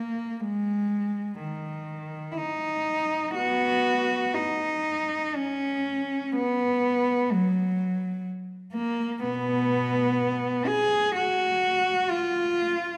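Mournful and meditative, this classical fragment for unaccompanied cello unfolds freely in a rubato three-beat lilt, cut from a longer work. A single bowed cello sits close and up front, its warm, intimate tone shaped by light vibrato, soft attacks and the veiled hush of sul tasto bowing, ranging from Cb3 to Ab4 across the 13.0 seconds. A moderate recital hall reverb lingers around the instrument, lending it a gentle sense of space.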